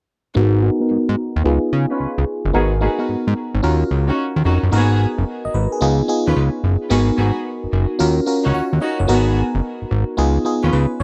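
A punchy, slick R&B groove opens at 0.3 seconds with a glassy FM electric piano, its bell-like attack and noise layer decaying under chorus and phaser, set up front and softened by a low-pass filter. Almost at once a fat analog bass arrives, a thick sawtooth and square-wave voice with a plucky filtered attack that sustains and evolves, sitting as the loudest part. A small chamber string section adds stabs, bowed sul tasto with light vibrato for an intimate, close tone, trailed by tape echo and dulled by its own low-pass filter. The harmony circles G#m7, C#7 and D#m7 over a swung 4/4 feel, with a filter sweep running through the opening section before a second section begins at 4.7 seconds. The sound is dry and close in the manner of a 1970s studio, and this cut from a longer piece stops at 11.0 seconds.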